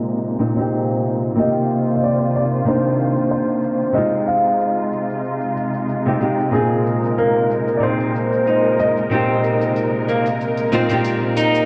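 A dark, mellow grand piano opens this sunset chillout excerpt with the melody, its intimate tone carrying audible action noise and a touch of tape echo. Alongside it from the first moment, a boxy, fingerpicked nylon-string guitar sits up front with vintage 12-bit sampler grit and tape echo, while a muted studio string section holds veiled, bowed chords with soft attack and vibrato. The mood is warm and smooth at 93 BPM in 4/4, with a gentle 16th-note swing. Electronic shaker and smooth hi-hats stay low in the background behind a low-pass filter, with a filter sweep running across the drums. The chords move through Bb9sus4, Cm11 and Fm7/C before returning to Bb9sus4, and at 7.2 seconds a clean, warm electric guitar enters with picked arpeggios colored by tape echo. The whole mix sits in a lush hall reverb with small room ambience, sounding as if played through a big sound system in a bare room, softened by a low-pass filter and its own filter sweep.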